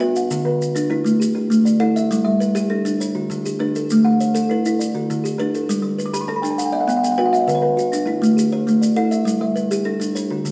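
Southern African traditional music in an mbira-style interlocking cycle at 134 BPM in 12/8, this hypnotic excerpt pairs two up-front, woody kalimbas playing arpeggios, one bright and short with a thumbnail pluck and the other ringing and vintage with a band-limited hollow-box tone, over grainy, close and dry maracas entering at 0.2 seconds, with a kalimba fill from 5.9 to 7.5 seconds, all within a moderate stone room's reverb as chords cycle through D, A5, G, Am and Bm.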